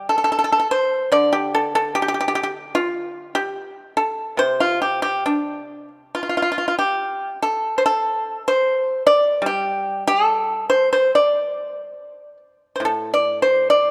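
The rhythm moves freely in a rubato 2/4, hovering around 68-76 BPM, so the pulse breathes rather than ticks. This is a short solo passage of Chinese traditional plucked-string music in D yu mode, tuned to A4 = 441 Hz, and its mood is one of elegant longing. A single acoustic pipa carries everything from 0.0 to 13.9 seconds, played with fingerpicks across a range from A2 to D5. Its tone is dry and percussive, placed up front so each pluck lands close to the ear. Around it, a touch of light reverb and a dark, warm production give the room a shaded glow. Near 12.8 seconds the music turns toward a new section just as this fragment of a longer piece cuts off.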